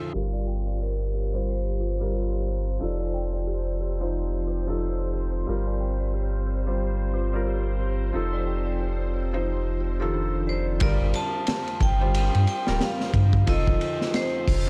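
Hypnotic and cinematic, this trip hop excerpt moves at 90 BPM in G minor with a 16th-note swing, circling between Gm7 and F7 over a small, dark room sound. A felt-muted upright piano carries the accompaniment throughout, soft and intimate with audible action noise, coloured by harmonic tremolo, 12-bit sampler grit, tape echo and a filter sweep that runs until 10.8 seconds. Beneath it a round sine sub bass sits up front, while a sawtooth string machine voicing cellos holds mellow chords in the background with ensemble chorus. An eerie, inharmonic FM bell traces arpeggios through chorus, phaser and its own filter sweep, and a very quiet reversed, granular texture swells dreamily until it and the bell stop at 10.8 seconds. A bright, metallic vibraphone struck with hard mallets rings out the melody with tape echo, returning at 10.5 seconds just before a crunchy, saturated breakbeat kit with a punchy kick, high-tuned snare and dark cymbals enters at 10.8 seconds for the closing passage.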